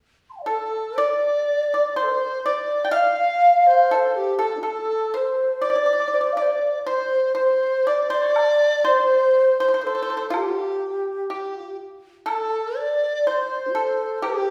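A wet recital-hall reverb surrounds this wistful, graceful passage of Chinese traditional chamber music, cut from a longer piece and unfolding in a rubato 2/4 at 61 BPM in D yu mode. An airy, mellow xiao carries the melody up front with vibrato and a soft attack, while a large dizi with a buzzing membrane, a pure, expressive tone and a crisp attack joins a dry, percussive pipa played with fingerpicks on the second line. A dark-toned acoustic woodblock enters at 8.4 seconds as the music moves into its second section.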